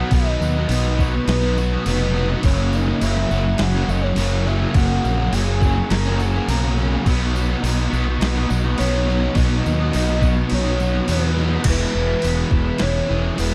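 Shoegaze-leaning dream pop rock at 104 BPM, this hazy, dreamy fragment from a longer piece sets a round, full-bodied octave-layered synth lead, treated with chorus, phaser and slapback echo, over a growly fuzz-driven fingered bass sitting up front and a background bed of three guitars: an overdriven electric with analog chorus, a hollow-bodied semi-hollow bathed in reverse reverb, and a bright, double-tracked distorted riff. A very quiet, twangy twelve-string electric spins arpeggios beneath, while a crisp 8-bit drum machine with a thumpy kick and a faint jingly tambourine keep straight 4/4 time, the kick and snare dropping out from 10.5 to 11.7 seconds. The chords move from B to F# and back, landing on E at 11.7 seconds, all within a dark, warm digital ambience.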